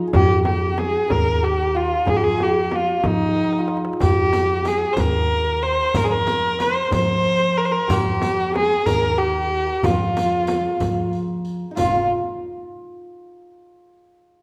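Bathed in a wet recital-hall reverb, this stately, passionate Persian modal ensemble in 6/8, cut from a longer piece, sets an up-front bowed kamancheh melody, biting and focused with vibrato and portamento, over a shimmering hammered santur second line, a woody pizzicato upright bass, and a deep, close and dry frame drum and tombak in the background, with a drum fill at 3.4 seconds before a distant riq with dark jingles joins at 4.0 seconds.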